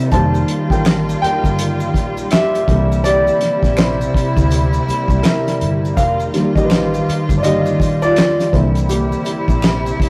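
Introspective and sultry, this short excerpt from a longer R&B and neo-soul piece moves at an unhurried 82 BPM in 4/4, with a lazy 16th-note swing and a tuning set just below standard pitch. A dark, mellow concert grand piano sits up front and carries the solo across the full 10.1 seconds, its deep low register coloring chords that alternate between F9sus4 and C7. Beneath it, a studio string section holds sustained bowed chords with vibrato, a soft attack and a sul tasto tone that feels intimate and close. A vintage muted electric bass, played with the fingers, gives a round, punchy, foam-muted low end, while a cloth-damped drum kit brings a fat snare, a tight kick, hi-hat and handclaps with a dry, thuddy character and a rolled-off top. In the background, compressed and saturated maracas, finger snaps and group handclaps add a faint texture, and the whole take has the rough, saturated feel of a rehearsal-room recording in a moderate studio reverb.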